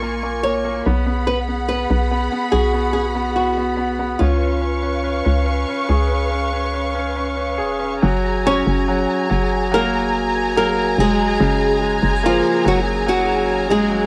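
The four parts begin together: a fingerpicked flamenco guitar carries the melody over concert grand piano accompaniment, lush bowed strings holding sustained chords, and a hollow, knocking FM bass. It is a heartfelt, hopeful pop ballad in F# major at 72 BPM in a straight 4/4, cut from a longer piece. The acoustic guitar is bright, with audible finger squeak. The piano is brilliant and polished, with deep bass and long sustain. The string section is close and woody with vibrato, and the punchy, dark bass sits up front with a fast attack that then decays. The guitar, piano and strings have the soft grain of cassette tape and a plate reverb in a modest home-recorded space, while the harmony moves from A#m7 through G#m7/B and C#7 before settling on F#add9 as a new section opens at 8.0 seconds.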